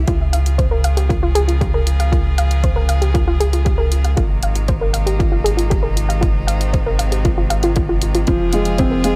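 A straight 4/4 pulse from a punchy, overdriven electronic kick and an overdriven hi-hat drives this moving, hypnotic piano-and-strings electronica, cut from a longer piece. A deep sine sub bass sits up front, while a clear, airy-bowed string quartet holds intense chamber chords and a soft, round, detuned pluck spins chorused, delayed arpeggios. The bass, strings and pluck all carry sidechain pumping, over chords moving from Db to Abadd9 to Fm in a small room. At 8.3 seconds, a mellow, boxy felt-muted upright piano enters close and intimate with a delayed riff.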